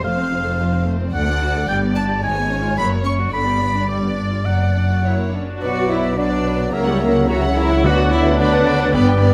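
Lively and cheerful, this quick classical-period movement for symphony orchestra moves at 109 BPM in 2/4 in B minor, with a rich, distant violin section carrying the melody over a second violin section played sul tasto, an oboe with light vibrato, smooth viola accompaniment, and bowed cello and double bass sections holding the bass. A bright, very quiet flute group joins at 5.0 seconds, and from 5.6 seconds, as the harmony settles on B minor, a mellow clarinet, a bassoon in the background and a dark French horn section playing sustained chords fill out the texture. Calf-headed timpani sound briefly from 7.8 seconds, all set in a moderate recital-hall reverb in this passage cut from a longer piece.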